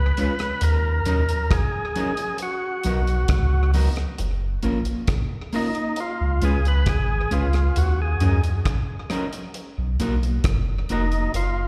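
A straight 4/4 roots reggae groove at 67 BPM in F# major rides on a dry, dark drum kit with tight kick, hi-hat and rim click carrying tape echo, while a round, deep sine sub bass sits up front beside it under a mellow, clean, fingered electric guitar treated with tape and slapback echo. Over a C#7, D#m7, Bmaj7 and F#maj7 progression, a thick, gritty overdriven tonewheel organ with key click, vibrato and third-harmonic percussion carries the melody through the same echoes and takes a solo from 4.2 seconds. The warm, uplifting excerpt sounds like a live gig heard through the venue's PA, wrapped in recital hall reverb.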